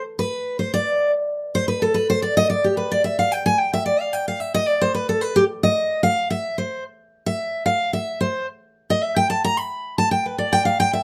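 Lively and rustic, this bluegrass excerpt races along at 221 BPM in 4/4 with a light swing, set in C major. A single picked steel-string acoustic guitar carries the solo from 0.0 to 11.0 seconds, its bright, full-bodied dreadnought tone sitting up front as it moves between G4 and B5. The phrase comes around twice, the repeat beginning at 7.4 seconds, and light reverb lends the short cut from a longer piece a touch of space.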